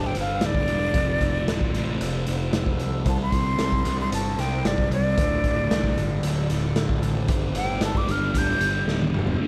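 Trippy and mysterious, this psychedelic rock excerpt in straight 4/4 is led by a breathy silver concert flute soloing with vibrato and analog delay over a double-tracked fuzz guitar riff with phaser, an overdriven, round fuzz bass, and a raw garage drum kit that sits up front with a punchy kick, gritty saturation and a rolled-off top. Beneath them, a very quiet tonewheel organ holds soft, flute-like chords with chorus vibrato and key click, while a buzzing, shimmering tanpura drone hums in the background under light reverb. The chords move from G through F, C and D minor back to G, and a drum fill arrives at 8.9 seconds.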